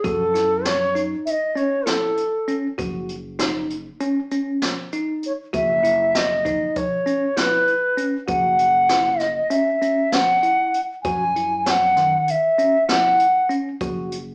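Tense and brooding, this progressive instrumental excerpt moves in 9/8 at 196 BPM counted in eighths in F# dorian, with a reedy, up-front bamboo bansuri carrying the vibrato-tinged melody over bell-like tine electric piano arpeggios, a woody, thumpy pizzicato upright bass and a distant brush-played drum kit with a high-tuned snare and boomy kick, all heard live in one room with moderate large-studio reverb and a small-speaker sound as the harmony shifts from F#m7 to D#m7/F# to F#5 before the bansuri stops at 13.5 seconds.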